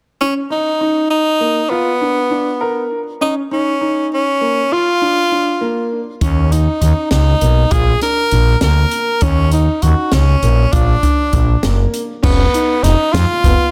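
A dense, heavily limited modern mix with light studio reverb frames this tense, driving progressive instrumental excerpt in Eb minor, moving in 5/8 at 200 BPM counted in eighths with a straight feel. A clear, up-front tenor saxophone sings the melody with light vibrato over boxy baby grand piano arpeggios touched with tape echo, as the harmony alternates between Eb5 and Bb. At 6.2 s a growling, thick FM bass and an open acoustic jazz kit with dark cymbals, a high-tuned snare and a boomy kick join in, and the passage shifts to a Db9/F chord at 12.2 s.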